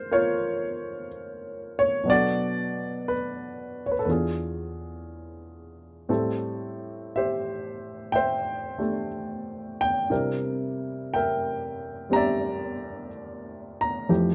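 Close, detailed and nearly dry, this romantic, intimate jazz ballad excerpt features a solo baby grand piano sitting up front with a natural tone, short sustain and audible action noise, moving through chords from Db6 to Bm7, E7b9, Am7 and finally C9 at 10.1 seconds over a gentle swing feel.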